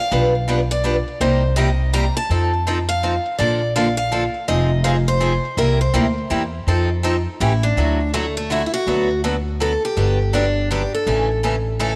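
A bright, parlour-sized picked steel-string guitar carries the melody with fresh-stringed sparkle and a touch of tape echo, while a second boxy picked steel-string guitar supplies accompaniment in this lively, playful jazz manouche excerpt at 164 BPM in a swung 3/4. Underneath, a woody, growly pizzicato upright bass sits up front. A moderate echo-chamber reverb gives the trio some room as the harmony moves from a chain of seventh chords into D major at 7.8 s.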